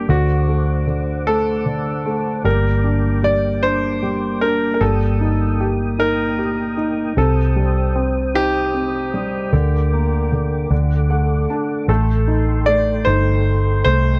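Dramatic and aching, this six-eight pop ballad in G minor moves slowly at 51 BPM in 6/8, with a straight feel and tuning a touch below standard. A clear, polished concert grand piano carries the melody between F#4 and D5, its short sustain softened by tape echo, while a baby grand piano fills out the accompaniment across a broad span from C3 to A5 with a warm, present tone. A soft, flute-like tonewheel organ holds sustained chords with percussive second-harmonic attack, chorus vibrato and a slow rotary speaker, sitting lowest in the blend. Underneath, a vintage foam-muted fingered electric bass stays dark, round and punchy, the most up-front part in the mix. The harmony moves from D7 through Gm, Eb/G, Cm and Gm/D to D, where a grand piano adds a fill from 10.7 to 11.9 seconds before a new section opens on Am7b5. The sound is dry and close, like a 1970s studio recording, and this is a brief cut from a longer piece.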